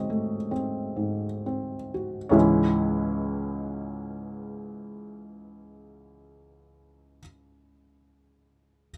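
Yearning and wistful, this brief excerpt from a romantic classical nocturne in C# minor features a solo felt-muted upright piano, soft and intimate with audible action noise and short sustain, played up front in a close, dry room at a slow, rubato 6/8 pulse of 19-29 BPM, slowing down over the opening 2.3 seconds as a G#7/C# chord resolves to C# minor.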